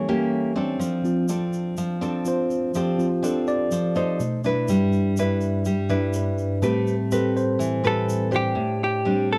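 A straight 4/4 bossa nova groove at 124 BPM in A minor carries this wistful, smooth excerpt, where fingerpicked, full-bodied nylon-string guitar and a bright, clean tine electric piano sit up front over a grainy egg shaker entering at 0.8 seconds, the electric piano taking the solo spot through chords such as A7b9/E, B7b9 and Am9 before a dark, compressed, picked hollow-body jazz guitar brings in the melody at 7.9 seconds, all within a dark production touched by light reverb.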